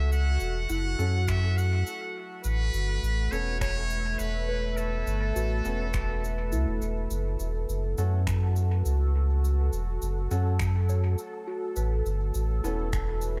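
A hazy, spacious mix set in a small room opens this ambient dub excerpt, with a deep, round sine sub bass sitting up front beneath a moody, warbling pad of detuned sawtooth voices smeared with chorus and its own reverb. A muted trumpet with a metal mute carries the melody in a thin, buzzy, distant tone with light vibrato, its phrases trailing into dub echo before it falls silent at 6.8 seconds. Underneath, a soft FM bell traces gentle arpeggios through chorus, phaser and echo, while a bright, woody upright piano drops in quiet stabs with audible action noise, also sent into the echo. Cabasa and finger snaps with a natural, brushed feel keep time alongside a tape-warm analog kick tucked in the background. From 7.6 seconds a bubbling texture of resonant, randomly stepping filters settles in behind the rest as the harmony moves between F#m and Aadd9.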